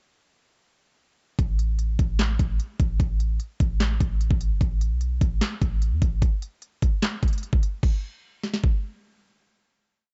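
A dark, dry and close-sounding production opens this short, menacing hip hop trap piece at 149 BPM in a half-time feel, tuned to A4 = 436 Hz, where an overdriven electronic trap kit with a knocking kick, sharp snare layered with handclaps, crisp hats with fast rolls and a crash cymbal hits from 1.4 seconds to 8.7 seconds, while a deep, boomy, sine-toned 808-style bass plays long sub-bass notes with pitch slides that follow the kick until 6.2 seconds, before the hook gives way to a final hit at 7.8 seconds.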